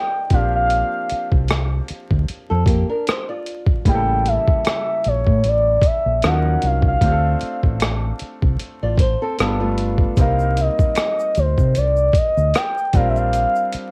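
Late-night and soulful, this swung neo-soul and R&B excerpt is carried by a smooth, gliding sine lead with portamento, vibrato and chorus, sitting up front over a clear, vintage concert grand piano and a dark, round fingered electric bass. A gritty, compressed boom bap sampler kit with a thumpy kick, hi-hat and rim click gives the groove its tape-soaked punch, while a fingerpicked flamenco guitar slips in briefly at 2.5 and 8.8 seconds. From 10.2 seconds an egg shaker and finger snaps murmur in the background, and the whole home cassette recording carries a light reverb and vinyl crackle.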